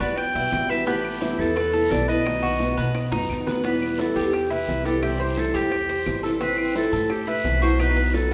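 A clear, distant clarinet leads from the first moment over a boxy, fingerpicked parlour steel-string guitar, a metallic, double-strung Cuban tres playing arpeggios, and a thumpy pizzicato upright bass. This Cuban son and guajira fragment in E minor moves at a brisk 173 BPM with a sultry, nostalgic mood. Round, low-tuned bongos sit in the background with a raspy guiro and very quiet woody claves, a short drum fill at 3.1 seconds leads into the second section, and the whole recording rings in a wet recital hall.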